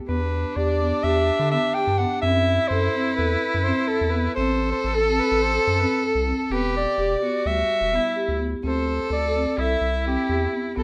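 A mellow, up-front soprano saxophone carries the melody with classical-style vibrato over a rich, bowed viola second line, woody soft-mallet marimba arpeggios and a deep, round analog bass in this urgent, restless chamber piece in E minor, moving in an uneven 9/8 at 253 BPM counted in eighths, set in a moderate recital-hall reverb, with a new section arriving at 8.6 s.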